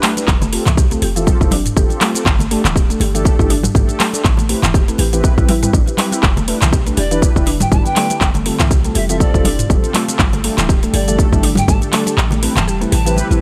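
A dry, close-sounding cut from a longer afro house track at 121 BPM in A minor, with a spiritual, hypnotic mood and a gentle 16th-note swing over a Fadd9, Gsus2, Am7, Em7 progression. A punchy, layered, tape-warm electronic kick sits up front with a deep, boomy 808-style bass, while an afro-pop kit of handclaps, metallic hi-hats, shaker and toms is joined by bright, damped congas in the background. A woody, mallet-like synth pluck plays arpeggios and a dark, brassy synth plays stabs, both with chorus, delay and sidechain pumping; a very quiet, ethereal pad arrives at 6.9 seconds, an airy, distant pan flute melody with vibrato and chiff follows at 7.0 seconds, and the kick drops out at 12.2 seconds.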